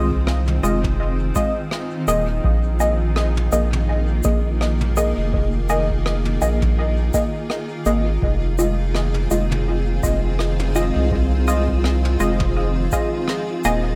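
A round, dark analog bass sits up front in this spacious, deep ambient dub cut, holding low sustained notes with a fast attack through the whole 14 seconds. Beside it, a muted, detuned chord stab with a filter pluck decays into chorus, phaser and dub echo, while a cloudy granular pad blurs sustained chords with its own reverb. At 83 BPM in 4/4 with a swung sixteenth feel, a tape-softened electronic kick sits back in the mix, joined by a jazz brush kit playing rim clicks, shaker and toms, its airy, polished sound trailing dub echo. The harmony moves in F minor from Fm7 to Bb7sus4 at 2.4 seconds and back to Fm7 at 8.2 seconds. At 9.5 seconds a very quiet, breathy wind-like noise texture drifts in, adding a faint layer over the small, lightly reverberant room.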